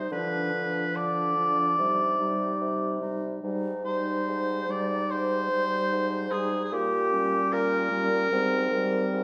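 A wet recital-hall reverb surrounds this slow, rubato passage cut from a longer romantic movement for wind quintet, tuned slightly low at A4 = 436 Hz, lyrical and tender over harmonies that pass through Cm and Abmaj7. A pure, hollow silver flute with vibrato carries the melody from the background while a warm oboe sings the second line up front. A clear clarinet and a smooth-topped French horn with vibrato fill in the accompaniment, and a mellow, vintage-sounding bassoon with light vibrato supplies the bass from 0.1 seconds.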